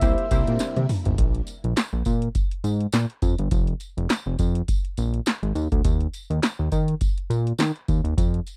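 This late-night boogie funk excerpt from the early eighties opens with a gliding lead on a high E, a punchy polysynth comp and a swirling, phased string machine set in the background, all sounding together over a C7 chord above the bass, drums and tambourine that play from the very start. Those three synth parts fall away within about a second, and a drum-machine fill runs from 0.6 to 1.2 seconds as the harmony shifts to Bb. From there the fat, detuned sawtooth bass with its filter sweep carries the groove alongside the analog drum machine, whose deep kick, punchy snare, metallic hats, handclaps and toms sit dry and up front. A jingly tambourine ticks along quietly behind them at a swung 103 BPM in 4/4. The harmony drops out before settling on Eb, and the close, dry studio sound keeps the bass and drums tight and immediate.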